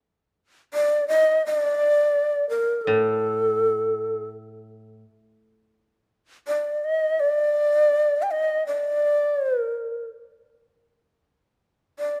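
Rubato and unhurried, this calm, austere fragment of Japanese traditional music sets a breathy, bright shakuhachi up front with vibrato and a crisp, chiffy attack, carried in the moderate reverb of a recital hall. A mellow, woody, dry koto touches a low note between 2.9 and 5.0 seconds beneath it.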